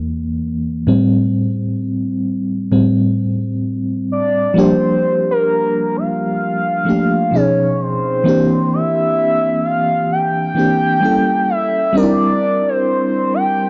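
R&B at a slow 65 BPM with a swung sixteenth-note feel, this moody, longing excerpt opens with a dark, full-bodied FM electric piano with tremolo and a noise layer, playing alone as it moves from an open start into Am7. At 4.1 seconds a mellow, wave-folded portamento lead enters with gliding vibrato, chorus and tape echo, carrying the melody up front as the harmony moves through jazzy extended chords from Gm9 onward. The sound is a dry, gritty hardware recording with light reverb, tuned slightly below standard pitch.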